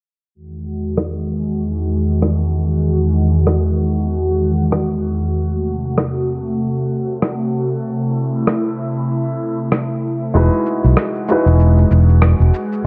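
A dark, low-passed production bathed in a lush hall reverb opens this relaxed, sunny chillout excerpt with a swung sixteenth-note feel. An airy, breathy pad with chorus and phaser holds sustained chords from 0.3 s under a filter sweep, joined at 1.0 s by a gritty, overdriven rim click and shaker sitting up front. At 10.3 s a growly, amped fretless electric bass and a mellow baby grand piano, intimate with audible action noise and a touch of digital delay, fill out the closing harmony.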